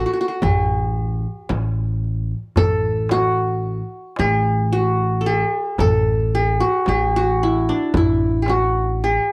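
This Arabic maqam ensemble piece has a festive, warm mood, moving in 10/8 at 112 BPM counted in eighths with a straight feel, in maqam rast on A and tuned to A4 = 441 Hz. Up front, the qanun carries the melody between D4 and A4, its fingerpicked triple strings giving a bright-edged tone. Also up front, the upright bass is plucked on gut strings, holding A1 with a woody, thumpy sound. At 0.4 s the percussion enters: a deep clay-shell darbuka with a natural skin sits in the background, sounding distant as if in a large room, alongside a large, deep frame drum that is close and dry and drops out at 8.7 s. The whole excerpt stays in one section, captured as a dry, close, 1970s-style studio recording with a small room ambience.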